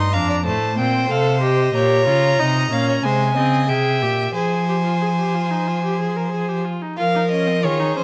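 A string quartet begins together from the first beat in a stately yet lively baroque-style fugue in F minor, moving at 92 BPM in a straight 4/4. Two clear, bowed violins with vibrato carry the melody and a second line, a rich viola fills in the accompaniment, and a focused cello sits up front on the bass. The harmony passes through Adim, Gm7b5/Bb and C7 before settling on Fm at 4.4 seconds, and a new section arrives at 7.0 seconds, while close, detailed microphones, light reverb and vinyl crackle lend an intimate, aged sound to this fragment of a longer piece.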